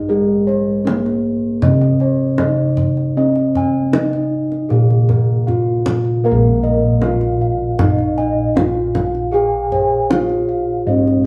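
A dark, mellow bronze metallophone melody struck with padded mallets opens over round, up-front bossed gongs in the bass of this serene, ceremonial Javanese gamelan excerpt in Bb slendro at 78 BPM, with higher bossed gongs weaving beating arpeggios and a deep, band-limited kendang played with soft hands, and a second metallophone adds shimmering, paired-tuned arpeggios at 6.2 s, all heard as a live ensemble in a large studio room with moderate reverb and lossy compression artefacts.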